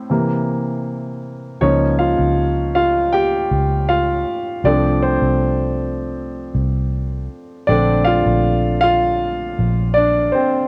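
A clear, polished baby grand piano sits up front with a faint cassette-tape tint, carrying this tender, heartfelt pop ballad from the opening alone before a dark, round, foam-muted fingered electric bass joins at 1.6 s. The punchy, amped bass holds low beneath the piano's accompaniment as the harmony moves through C7, Db6, F/C and Bbmaj7. Light reverb and a homespun cassette character give the short fragment, cut from a longer piece, an intimate feel.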